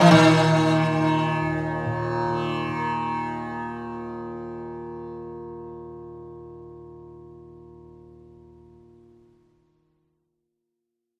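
Hindustani classical music in a solemn, meditative mood, this brief fragment cut from a longer piece moves at 154 BPM in a straight 7/4. A sitar carries the melody up front, its plectrum-plucked tone round and buzzing, with sympathetic strings adding a shimmer around each note, while it stays within a narrow span from Eb3 to Fb3. Beneath it, a softly plucked tanpura sustains a drone anchored on Eb, its own buzzing resonance sitting lower in the balance. The sitar falls away at 4.2 seconds, leaving the tanpura to continue alone until 9.8 seconds. Close, detailed microphones capture both instruments in a small room with a moderate, short ambience that keeps the sound intimate.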